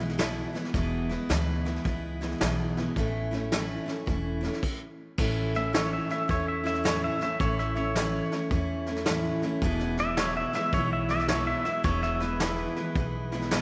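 Easygoing and sunny, this honky-tonk and classic country excerpt moves at 108 BPM in 4/4 with a swung eighth-note feel in A major. A bright, full-bodied dreadnought acoustic guitar carries the accompaniment up front, its picked strings showing a touch of finger squeak. Beneath it, a woody, thumpy upright bass on gut strings is plucked pizzicato, while a vintage kit played with brushes sits mid-forward with dark cymbals, a medium-tuned snare, a tight kick and a rolled-off top. After a stop at 4.6 seconds, a clean, twangy pedal steel guitar enters at 5.6 seconds and takes the solo over the rest of the clip, played with fingerpicks and slide, compressed, and shaped with volume swells. The whole mix sits in a wet echo chamber reverb that lends a roomy, old-time glow.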